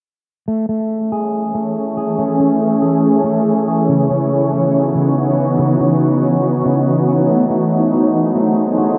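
Ethereal and melancholic, this half-time hip hop excerpt opens at 0.5 seconds with a dark, slightly broken-up electric guitar fingering arpeggios through a low-pass filter and delay. A bright, shimmering pad joins at 1.3 seconds with detuned, granular sustained chords carrying an octave-up sheen, chorus and its own reverb, both parts sitting up front. The harmony moves from Amaj7 to C#m11 and then G#7b9, all bathed in a huge, wet reverb with a long 8.7-second tail and a soft low-pass haze.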